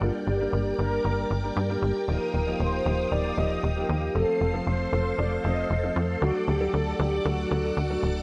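A straight 4/4 pulse at 116 BPM drives this melodramatic, danceable italo disco fragment in G minor: a punchy, nasal sequencer bass sits up front beneath dark, boxy grand piano stabs, a lush string machine ensemble holds sustained chords through phaser, ensemble chorus and a filter sweep, and a round, detuned synth brass carries the melody with chorus and digital delay over Gm, Ebadd9, F and D, set in a moderate hall reverb with a bed of vinyl crackle.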